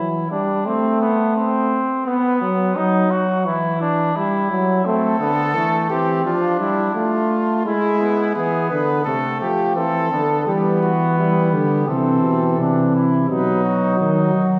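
Set in a straight 4/4 at 86 BPM, this driving yet contemplative classical brass canzona in A minor opens with a clear, present trombone accompaniment beneath a warm, roomy flugelhorn second line, before a mellow trumpet takes the melody at 4.8 seconds with light vibrato and a soft attack, and a bass trombone with a smooth top joins at 10.5 seconds, all placed further back in a wet scoring-stage reverb in this fragment of a longer piece.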